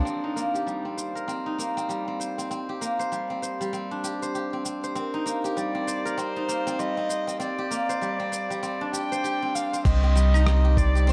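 Organic downtempo at 98 BPM with a swung 16th-note feel, earthy in mood and cut from a longer piece: silvery, fingerpicked steel-string zither arpeggios ring up front through a low-pass filter and delay over a dusty, gritty sampler-style kit of claves, rim click, shaker and crash cymbal; a boxy bowed kamancheh with smooth vibrato and portamento enters at 5.0 s; and at 9.9 s a deep, round sine sub bass with sidechain pumping arrives alongside a thumpy electronic kick, set in a dark, warm production with light reverb over Eb, Bb and Eb/C chords.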